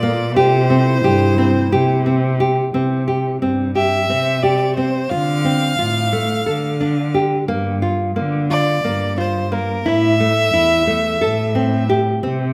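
A moderate recital hall reverb surrounds this restless, playful chamber piece, cut from a longer work, which moves in 7/8 at 177 BPM counted in eighths, in C mixolydian. A nylon-string guitar sits up front with full-bodied, fingerpicked arpeggios and an audible finger squeak, while a bowed cello carries the bass with a focused, smooth-topped tone and vibrato. A single violin plays the melody in a rich, even voice with vibrato until 11.9 seconds. During the opening 2.7 seconds, a warbling, lo-fi pad with chorus and its own reverb holds mellow, nostalgic chords in the background before falling away. The harmony moves from C7 to C5, then through Dm7 and Gm7 before settling on Am.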